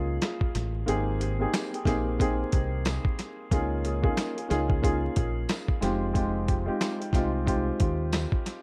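A dark, woody upright piano and a round, punchy fingered electric bass open this confident boom-bap hip-hop excerpt at 91 BPM in Ab major, the mellow piano colored by cassette tape, filtering and tape echo as the chords move from Eb9sus4 to Abmaj9, Db69 and Fm9. A gritty, compressed sampler-style drum kit with a thumpy kick and medium-tuned snare sits up front with tape echo and a swung 16th-note feel, its kick muted from 0.9 to 1.5 seconds, while a very quiet, jingly tambourine joins at 1.5 seconds. The echo-heavy mix carries a light small-room reverb and vinyl crackle, lending a dusty, vintage character.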